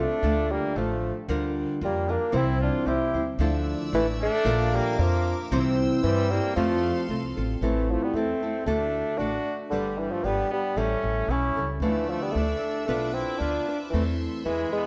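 Festive and romantic, this short mariachi-flavored Mexican folk cut at 114 BPM in 2/4 moves from F major to A minor at 7.6 seconds, as an up-front bassoon with tape echo carries the melody over a bright, punchy trumpet second line with light vibrato, fingerpicked nylon-string guitar with audible finger squeak, and a woody pizzicato upright bass, while a clear, earthy bowed violin section adds sustained chords from 3.4 to 7.6 seconds and again from 11.8 seconds, all set in a moderate recital hall reverb.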